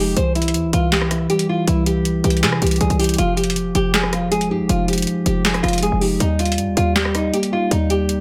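Brooding and dark, this short trap cut from a longer hip hop piece moves at 159 BPM with a half-time feel. A bright, fingerpicked nylon-string guitar carries the melody up front, its classical tone softened by a low-pass filter, while a mellow tine electric piano supplies clean, direct accompaniment beneath it, also filtered. A short 808-style bass gives punchy, tight sine tones with a noise layer, a fast attack and a decaying tail. The booming analog drum machine enters at 0.2 seconds with overdriven handclaps, metallic hi-hats, a rim click and a crisp snare, the snare, clap and hats set in a short room and sitting up front. Light reverb surrounds the mix as the chords move from C to Fm7 at 3.2 seconds and then to Eb at 6.2 seconds.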